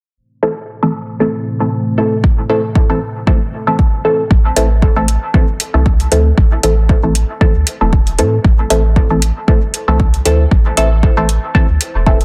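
Dub techno in a meditative, deep mood, this fragment of a longer piece sits on a single A minor chord with a lightly swung 4/4 pulse. It opens with a dark, detuned sawtooth analog pad carrying sustained chords under a lush chorus, alongside a muted, mellow chord stab that plucks through its filter and decays into chorus, phaser and dub echo. Both of these parts move through filter sweeps, and both breathe with sidechain pumping. An overdriven, up-front electronic kick arrives at 2.2 seconds. At 4.3 seconds the pad drops out as a round, soft sub bass takes over the low end with a triangle and square-wave tone and its own pumping, and metallic, overdriven hi-hats join at 4.6 seconds. Light reverb surrounds the parts, and the master is dense and heavily limited in a modern style.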